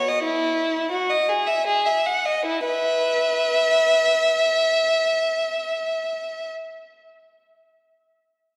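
Flowing and serene, this short excerpt from a baroque-style suite movement for unaccompanied violin moves in E major at about 80 BPM in 3/4, its rubato feel slowing down over the first 2.4 seconds. A single warm, bowed violin with vibrato plays alone from 0.0 to 6.5 seconds, ranging from E4 to F#5 with a smooth, even tone, sitting up front in its own sound. The instrument is tuned to A4 = 435 Hz and heard from further back in a church with a wet reverb lasting about 3.0 seconds.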